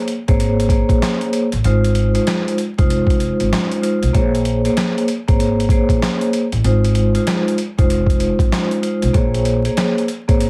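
Dark and moody, this short boom-bap hip-hop cut sets a filtered vibraphone, struck with medium mallets and carrying a slow motor vibrato, up front as a smooth, ringing accompaniment over a swung groove that moves between Bbm9 and Ab6. A gritty, compressed sampler-style drum kit with a thumpy kick, medium-tuned snare, hi-hat and handclaps, re-recorded in a large room, sits up front, while a woody pizzicato upright bass on steel strings joins at 0.3 seconds. The whole piece is dry, with a heavily compressed radio sound and vinyl crackle.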